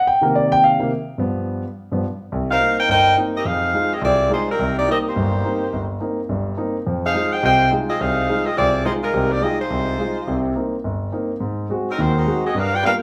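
A roomy, wet studio reverb surrounds a band playing live together, with both parts sitting up front in this short cut from a longer jazz piece in C minor. The tempo is a brisk 211 BPM in 4/4, with a light swing on the eighth notes and a brassy, sultry mood. A warm grand piano opens alone over Cm7 and G7, its intimate tone carrying long sustain and audible action noise as it accompanies through to the end at 13.0 seconds. At 2.5 seconds a mellow saxophone section takes the melody, playing as a smooth-topped ensemble with vibrato and a soft attack in a classic jazz style. The harmony moves between Cm7 and Fm7 before turning to Ab7 near the close.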